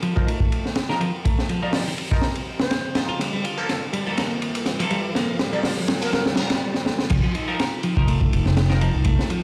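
Heard through a big sound system in a bare stone room with moderate reverb, this energetic, gritty breakbeat cut opens with a crunchy, up-front drum kit with a punchy kick, high-tuned snare and dark cymbals, alongside a clean, compressed electric guitar riff under a low-pass filter and digital delay, a nasal, band-passed chord stab with phaser, and a deep, detuned analog pad in the background that pumps against the beat and carries a filter sweep through the build-up. A riser and a breathy, hollow jazz flute melody with a small-speaker tone drift in the background during the build, which moves from F7sus4 to Gm9 and brings drum fills and a short break. At the drop at 7.1 s, a woody, tube-saturated pizzicato upright bass arrives up front as the harmony returns to F7sus4.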